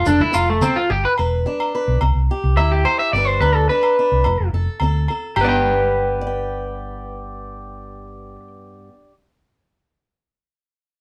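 A twangy, slightly broken-up electric guitar sits up front playing arpeggios in this sunny highlife guitar band excerpt at 107 BPM in G mixolydian, joined by a clean electric guitar solo through the first 5.4 seconds, a round, dark hollow-body bass, a bright, boxy fingerpicked swing-style acoustic guitar, ringing agogo bells that stop at 5.5 seconds, and brief background touches of soft-handed congas and grainy maracas at the very start, the band playing live in one room with moderate studio reverb.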